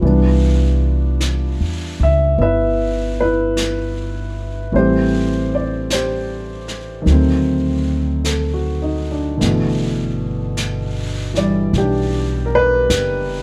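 A slow, swung 4/4 pulse sets an unhurried pace for this intimate, romantic jazz ballad, cut from a longer piece. An upright piano carries the accompaniment throughout, its boxy, woody tone marked by long sustain and audible action noise that make it feel close and up front. Beneath it, a pizzicato upright bass on steel strings adds a thumpy, warm low end, also sitting near the listener. A brush drum kit plays brushed snare and hi-hat from further back, sounding distant and roomy with a medium-tuned snare. The harmony moves from Cmaj7 to Am7 at 4.7 seconds, then through D7b9 before resolving to G6 at 9.4 seconds, all wrapped in a light reverb.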